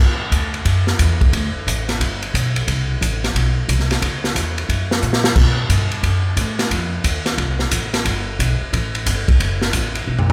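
Energetic and swinging, this big band jazz passage is cut from a longer piece and is carried by a rhythm section of upright bass and drum kit. The upright bass opens at 0.0 seconds, plucked pizzicato with a woody, dark tone from its steel strings, sitting low in the register. The drums enter at 0.3 seconds and sit up front, with a punchy kick, a medium-tuned snare, hi-hat, toms, and dark ride and crash cymbals that give the kit a polished, airy character. A drum fill arrives at 5.0 seconds, and another comes near the close. The pair plays in a moderate recital hall reverb, lending the acoustic sound the spacious feel of a church or concert hall.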